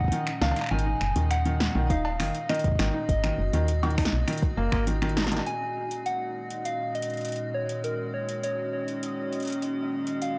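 IDM in Eb minor at 101 BPM, eerie and glitchy, where a round, keys-like FM synth lead carries the melody over an icy, crystalline glass pad with chorus, 12-bit sampler grit and sidechain pumping, a faint bubbling stepped-filter texture in the background, felt-muted upright piano arpeggios with audible action noise and tape echo, a woody, dark FM bass up front, a soft electronic kick that drops out at 4.9 seconds, and an overdriven analog drum machine with punchy snare, metallic hats, cowbell and finger snaps, all in a dry, gritty cassette-tape sound that moves from Db and Ab7(no3) to Ebm7 at 5.5 seconds in this cut from a longer piece.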